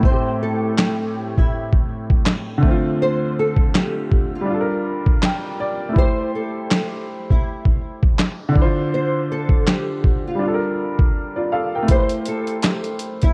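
This lo-fi hip hop piece in A phrygian sits at 81 BPM in 4/4, with a swung sixteenth-note feel and a melancholic, reflective mood. A sampler-style boom bap drum kit sits up front, compressed, pitched down and gritty, with a thumpy kick, a medium-tuned snare, hi-hat and handclaps carrying a tape-warmed character. An upright piano, woody, smooth and vintage with a cassette tape coloring, lays down the accompaniment over a cycling Am7, Dm7 and Gm7 progression and adds a brief fill from 4.9 to 6.0 seconds. A small, fingerpicked nylon-string guitar carries the acoustic melody from 0.1 seconds, its finger squeaks audible and its tone thickened by an ensemble chorus. The whole cut, lifted from a longer piece, stays in a break until 11.9 seconds, framed by light reverb, a small-room ambience and the soft haze of cassette tape.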